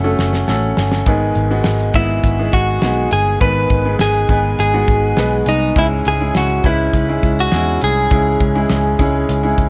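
Uplifting and hopeful, this brief piano-driven pop excerpt at 102 BPM in a straight 4/4 pairs a bright, up-front clean electric guitar melody with a woody, brilliant upright piano whose action noise and long sustain sit close, over a round, foam-muted picked bass and a dry, damped 70s drum kit with a fat snare and tight kick that opens on a drum fill alongside a piano fill, moving from F#m to G#m at 1.1 seconds and C#m at 5.8 seconds, all under light studio reverb and the warbly pitch drift of worn old cassette tape.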